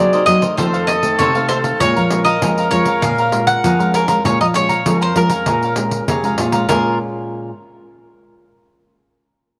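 An up-front, woody mandolin with double strings carries the melody in this nostalgic yet lively samba-choro excerpt, joined by an airy wooden flute playing a tongued, straight-tone second line. A crisp picked cavaquinho and a fingerpicked classical nylon-string guitar fill out the accompaniment over the Cm7b5, F7 and Bbm7 changes. A second, full-bodied nylon-string guitar plays a thumb-plucked bass with audible finger squeak, and a jingly, saturated pandeiro drives the rhythm, all in light reverb, with most parts stopping near 7.0 seconds and the accompanying guitar ringing on to 7.5 seconds.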